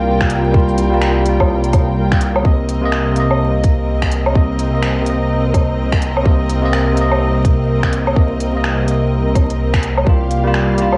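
Nocturnal and wistful, this future garage fragment swings its sixteenths as a bell-like, up-front tine electric piano and lush, vibrato-rich symphonic strings with 12-bit sampler grit pump in sidechain alongside a deep, rumbling detuned saw bass that pumps with them, the harmony moving from Gm7/C to Cm7 at 2.4 seconds. A tight electronic kick and a crisp kit of cabasa, finger snaps, hi-hat and woodblock come in at 0.2 seconds, both carrying cassette tape colour and re-recorded in a large room, while analog delay trails the piano. Light reverb, vinyl crackle and a homespun cassette sheen wrap the mix.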